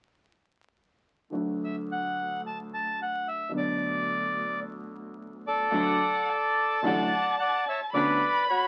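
Playful and nostalgic, this short rubato tango cut at 110 BPM in D major opens at 1.3 seconds with a smooth, deep-bassed concert grand piano up front and a clear, focused bowed double bass with vibrato, as a reedy, dark, band-limited bandoneon carries the vintage melody from 1.6 seconds onward, joined at 5.7 seconds by a close, expressive violin with portamento and a very quiet, bright, earthy studio string section adding stabs, all heard through a moderate studio room and the crackle of a very old 78 rpm record.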